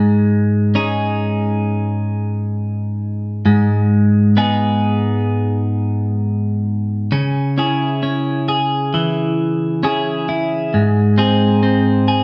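A twelve-string electric guitar carries this short pop excerpt alone, its bright, twangy, picked tone sitting up front, clean and compressed, with spring reverb. The tempo is a slow 66 BPM in a straight 4/4, and the key of C# minor gives the piece a longing, melancholic mood. The guitar ranges from G#2 to G#4, moving from C#sus2/G# to G#m in the opening passage before a second section begins at 7.1 seconds on C#m and moves to G# at 10.7 seconds. A moderate studio reverb frames the sound, with the feel of a band playing live in one room. The fragment is cut from a longer piece and closes at 12.2 seconds.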